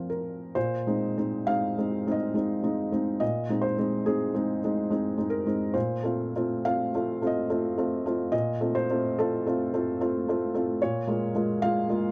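Neoclassical minimalist piano in a rubato 3/4 at 62-75 BPM, this intimate, melancholic excerpt features a solo felt-muted upright piano, soft, mellow and up front, moving from Bbsus2 through Ab/Bb and F/Bb to Bbm7 in a dry, close 1970s-style studio recording tuned to A4 = 441 Hz.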